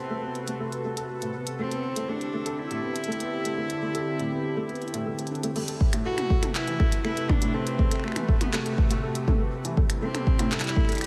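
Lightly reverberant, this eerie, intricate IDM fragment at 121 BPM sits in A dorian and moves between Amadd9 and Cadd9. A rich, biting bowed cello carries the melody over a warbling, nostalgic tape-like pad with chorus and 12-bit sampler grit. A felt-muted upright piano plays soft arpeggios through a low-pass filter and diffuse delay, while a bubbling, resonant stepped-filter texture hovers in the background until 5.6 seconds. A glitchy drum kit with clicky hats, finger snaps, handclaps and toms enters at 0.4 seconds, joined at 5.8 seconds by a deep, up-front electronic kick.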